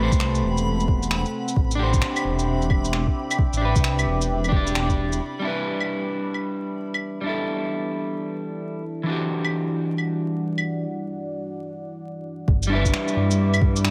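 A dark, vinyl-crackled recital-hall haze opens this wistful, ghostly future garage excerpt at 132 BPM with a 16th-note swing, where a slightly broken-up picked electric guitar sits up front with delay and sidechain pumping over a deep, moody detuned pad that gets a filter sweep from 5.2 s, while a menacing, saturated detuned saw bass and soft kick drop out around 5 s and return at 12.5 s after a break, a reversed granular shimmer drifts in the background early on, and shaker, finger snaps and claves tick throughout over chords moving from Am9 through D9sus4, G6 and Em9.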